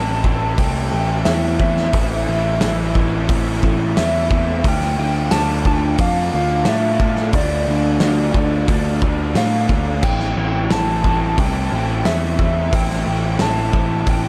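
A raw, double-tracked garage guitar riff, overdriven and lo-fi with lush chorus, sits up front beside a loose, gritty indie drum kit with dark cymbals and a punchy kick, while an overdriven picked bass lays down a round low end and a gentle, warbling FM synth lead carries a vintage, keys-like melody through chorus, tremolo and delay, the whole mix soaked in huge ambient reverb that gives this brooding shoegaze and dream pop excerpt its dreamy haze over Am, Dm and Am7.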